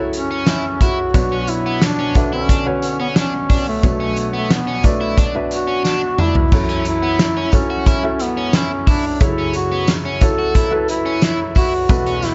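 A dark, softly reverberant studio sound frames this short cut from a longer piano-driven pop piece, its top end rolled off and its mood anthemic and warm. A felt-muted upright piano carries the accompaniment, mellow and intimate, with its thin felt and audible action noise as the harmony moves from F#m7 to Bmadd9. Over it a duduk sings the melody up front, vintage and folk-tinged with a gentle vibrato. A loose indie drum kit pumps in its studio room, with a fat snare, punchy kick and dark cymbals. A biting, overdriven electric guitar plays a picked riff, and a jingly tambourine sits close and dry in the background. A drum fill from 5.8 to 6.5 seconds leads into the return of F#m7.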